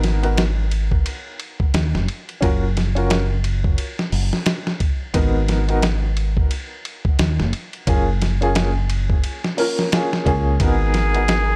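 A swung, dusty sampler-style beat with a thumpy kick, snare, hi-hat and ride cymbal drives this brooding, melancholic trip hop fragment together with a round, punchy fingered electric bass and a woody, slightly detuned upright piano colored by tremolo and tape echo, before a breathy plunger-muted jazz trumpet with wah-wah and 12-bit sampler crunch enters at 10.6 seconds and an airy, wind-like noise layer hovers very quietly from 11.0 seconds in a dry, gritty mix.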